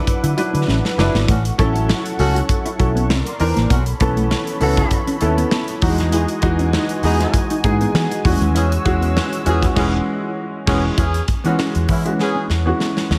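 Breezy and upbeat, this short cut from a longer piece is polished 1980s jazz-funk pop in E major, moving at 99 BPM in 4/4 with a light swing on the sixteenths. A warm baby grand piano sits up front with a natural tone and analog chorus, carrying the accompaniment over a dark, foam-muted fingered electric bass that sounds round and punchy through its amp. A modern studio drum kit drives the groove with a punchy kick, a medium-tuned snare, hi-hat and crash cymbal, placing a fill near the start and another from 12.2 seconds. A clean, compressed electric guitar plays a riff in the background through ensemble chorus, while a smooth, detuned sawtooth pad holds soft-attack chords until 10.9 seconds. A loose, jazz-style horn section adds a second line with vibrato from 1.3 seconds, and the band hits an accent before the closing section arrives on an E69 chord, all framed in a small room with light reverb.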